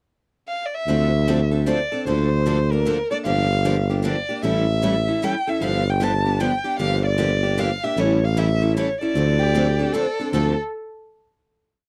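Virtuosic and fiery, this short acoustic string swing piece in the jazz manouche style moves briskly at 152 BPM in 3/4, swung on the eighths and set in D minor. During a brief pickup, a warm, bowed violin begins a free, expressive melody up front with vibrato, portamento and a soft attack, and as the pickup ends a tuba joins with a jazz-style root-and-fifth bass line with a smooth top. Two picked steel-string acoustic guitars supply bright rhythm accompaniment with audible finger squeak: the first strikes every beat, short and accented on two and three, and the second sits in the background. Near the close, at 9.4 seconds, a dark second violin enters close by, answering in the melody's rests with its own vibrato and portamento. The harmony cycles through minor-key changes such as Dm7, Gm7 and A7 before landing on a final chord, all captured in a dry, close 1970s-style studio sound with little reverb.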